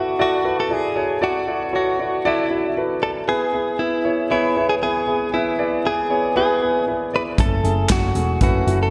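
A big arena sound in a moderate concert hall reverb frames this earnest, dramatic piano-driven pop excerpt at 117 BPM in 4/4, where a clean, direct-recorded electric guitar carries the melody with vibrato and slapback echo over an intimate concert grand piano with audible action noise and deep bass, moving from Dadd9 to E to A before a dark, round hollow-body picked bass and a natural country drum kit with punchy kick, medium-tuned snare, hi-hat and handclaps arrive at 7.4 seconds.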